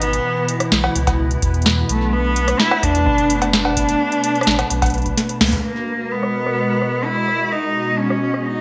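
A warm, bowed cello carries the melody in this eerie, intricate IDM excerpt, its single player sounding expressive and distant with vibrato, portamento and a touch of delay, set in G# minor at 128 BPM in a straight 4/4. Beneath it, a hollow, flute-like pad holds sustained chords with a warbling, vintage ensemble-chorus shimmer, moving from C#m7 to Bm7 and then to G#m9 at 5.6 seconds. A booming analog drum machine sits up front with metallic hats, a tonal snare, rim clicks, cowbell and toms, all dulled by low-pass filtering, while a deep electronic kick enters at 1.1 seconds and drops out for a drum fill and band accent just before the change. A round sine sub bass anchors the low end until 5.6 seconds, and a bubbling, detuned sawtooth texture with resonant, random filter steps and its own chorus and reverb murmurs in the background. The whole mix is bathed in a wet plate reverb with a bright, 1980s-style digital sheen.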